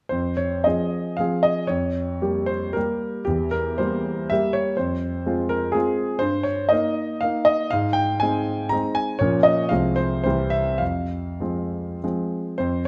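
Close, detailed microphones capture a concert grand piano set up front in a moderate recital hall, where a reverb of about 1.5 seconds lends a natural bloom to the sound. The instrument itself is clear yet slightly worn, with a deep bass anchoring its lowest notes. This is a romantic classical dance in triple time, played solo on piano from 0.1 to 12.9 seconds as a short cut from a longer piece. Dotted rhythms and a flexible, rubato feel give it a capricious, wistful character, and the music spans a broad range from the low register up into the upper treble. The harmony moves from F minor through Gm7b5/F and C7/E back to F minor, then passes through Eb/G and Ab before Bbm and Fm/C lead to C and a return to F minor at 10.8 seconds.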